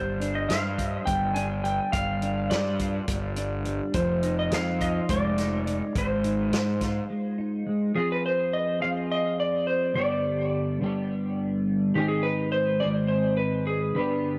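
This psychedelic rock excerpt moves at 210 BPM in eighths, in a straight 7/8 with a hypnotic, dark mood rooted in G phrygian dominant. An up-front lap steel guitar, clean and shadowy, carries the melody with fingerpicks and slide, its line trailed by tape echo. Beneath it, a clean, compressed electric guitar plays the riff, double-tracked and spun through a rotary speaker. A round, fuzz-soaked fingered bass, pushed through overdrive and tube saturation, sits up front alongside a vintage acoustic kit with a medium-tuned snare, a punchy kick, hi-hat and a rolled-off top in a natural studio room. The bass and drums drop out just before a break at 7.1 seconds, leaving the two guitars to carry the second half over chords moving from Fm to G to Ab. Light studio reverb and a faint mains hum colour the whole recording.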